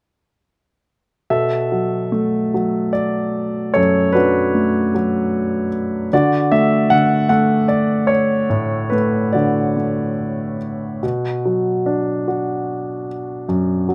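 A warm concert grand piano plays alone from 1.3 to 13.9 seconds in this short cut from a longer classical piece, a lyrical solo in B minor at a rubato 70-77 BPM in 3/4 with a melancholic, reflective mood. Its sound is intimate and up front, with deep bass, long sustain, a polished finish and audible action noise, set in light reverb and tuned to A4 = 439 Hz. The harmony moves from Bm7 to D at 6.1 seconds and settles on Bm at 11.0 seconds, across a range from F#2 to F#5.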